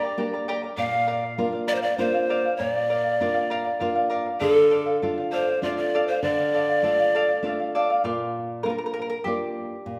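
A wet recital-hall reverb surrounds this short excerpt of Andean folk, which feels both festive and wistful as it moves in a straight three-beat metre. Up front, large cane pan pipes carry the melody with a breathy, straight tone, a soft attack with audible chiff, and rolled-off highs, singing until 7.7 seconds. The charango, also up front, fingerpicks a shimmering accompaniment on its double strings, some of them octave-doubled. Beneath it, a nylon-string guitar fingerpicks a deep classical accompaniment, with finger squeak. The harmony moves from G minor through B-flat and D minor, and at 8.0 seconds the music turns back to B-flat as the charango steps forward for a brief solo over the guitar.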